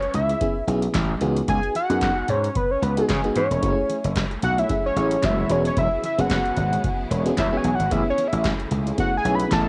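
A fat, chorused analog synth lead carries the melody up front throughout this short cut from an early-eighties boogie funk track, backed by a gritty, overdriven slap bass, a booming analog drum machine with deep kick, crisp snare, metallic hats and handclaps, and very quiet congas. An FM electric piano with tremolo comps over chords moving from Amaj7 through C#9sus4, F#m9 and E69, while lush bowed strings slip in softly at 3.6 seconds and a round, dark synth brass line joins in the background at 4.6 seconds. Set at 112 BPM in F# dorian with a swung sixteenth feel, the danceable, funky groove has the hazy character of a home cassette recording with light digital reverb.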